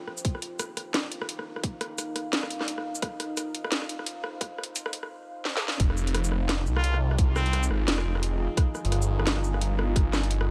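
A thick, swirling phased saw bass arrives at the drop at 5.8 seconds in this heavy, cinematic half-time drum and bass cut, landing on a Fm7 chord beneath a deep, moody pad with chorus, reverb and gritty 12-bit sampler pumping, while an up-front tight electronic kick and a kit of cracking snare, metallic hats, rim click and shaker drive the build-up and its drum fill, and a nasal, straight-muted jazz trumpet with digital delay slips in briefly at 6.8 seconds.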